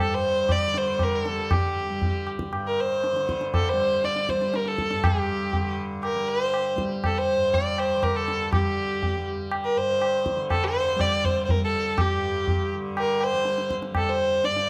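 Set in a moderate recital-hall reverb, this fragment of a longer Hindustani classical piece in raga Bhimpalasi on G carries a longing, meditative mood at 120 BPM in 7/4, and the pulse speeds up as it goes. A single bowed violin sits up front with a rich, smooth, even tone and vibrato, carrying the melody between G4 and D5. Beneath it, a softly plucked tanpura sustains a buzzing, shimmering drone from G2 to G3, and a low-tuned tabla with a short ring joins at 0.5 s.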